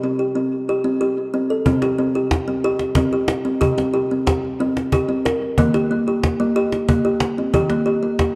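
A kalimba opens this meditative world excerpt alone, thumb-plucking short, hollow arpeggios in C minor over a C5 chord, its tones carried by a tape echo. At 1.7 seconds a cajon enters with hard hand strikes and a faint rattle of snares, an acoustic, small-room sound set a little lower than the kalimba. Both parts sit up front, moving at a slow 61 BPM in a straight 6/8 that gives the piece a hypnotic sway. The harmony shifts to Eb at 5.6 seconds as the kalimba's woody arpeggios range from C3 up to Bb4. A wet echo chamber reverb with a 2.1-second tail wraps the dark, warm production, and the kalimba runs on to 8.4 seconds, where the cut from a longer piece ends.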